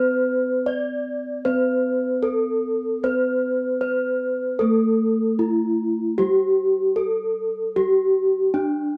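A steady, straight 4/4 pulse at 76 BPM underpins this serene, ceremonial gamelan passage, a nine-second excerpt cut from a longer piece. Two bronze metallophones sit up front in a moderate studio ambience, played live together in one room. One carries the melody with a wooden mallet and paired tuning that yields metallic, shimmering beats, while the other, struck with padded disc mallets, supplies a mellow, soft accompaniment lower in the range.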